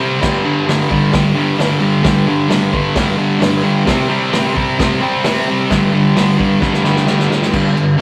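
A thick fuzz guitar, bright, double-tracked and up front, drives this raw, swaggering garage rock excerpt with a picked riff built on G5 and C5 power chords at 131 BPM in straight 4/4. Behind it, a vintage acoustic drum kit with dark cymbals, a punchy kick and a rolled-off top works through crash, hi-hat, ride and snare, capped by a fill from 6.6 to 7.5 seconds. The rough rehearsal-room sound carries a moderate studio reverb, and the clip is cut from a longer piece.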